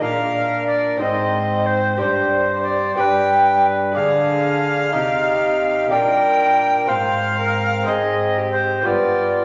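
A small consort plays together from the first moment in this courtly yet rustic Renaissance-style dance in 6/8 at 61 BPM (dotted quarters): an airy tenor recorder with a chiffy, crisp attack and vibrato carries the melody up front, while a distant, biting gut-string viola traces a second line alongside a fingerpicked lute with delicate doubled strings. With them, a mellow solo bassoon with a soft attack adds accompaniment, and a dark, smooth-topped cello holds the bass. The harmony passes from Bb through Gsus4, Ddim and Cm before settling on G7 at 8.8 seconds in this short passage cut from a longer piece, all bathed in the wet reverb of a recital hall.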